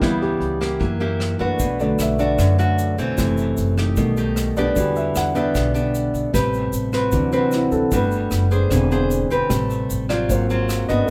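A relaxed, sunny bossa nova passage opens with the grand piano taking a solo, its intimate tone carrying deep bass, audible action noise and long sustain, over up-front, bright, fingerpicked nylon-string guitar, woody, thumpy pizzicato upright bass and a dark, smooth brush kit with a tight kick, hi-hat and rim clicks. A grainy egg shaker joins in the background at 1.6 s. The band plays live together in a moderately ambient studio room, with jazzy harmony moving through altered dominants and rich extended chords such as Am9, D13 and Gmaj7.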